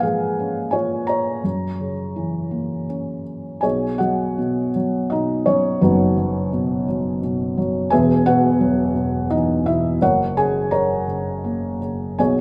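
A felt-muted upright piano plays alone in this cool, moody fragment of lyrical classical music, its dark, intimate, thick-felt tone sitting up front as it moves in rubato 3/4 at about 84 BPM from A#m7 and F#7 into B major at 3.6 s, then through Badd9, Esus2 and F# across a range from E1 to A#5, ringing in a moderate concert hall reverb.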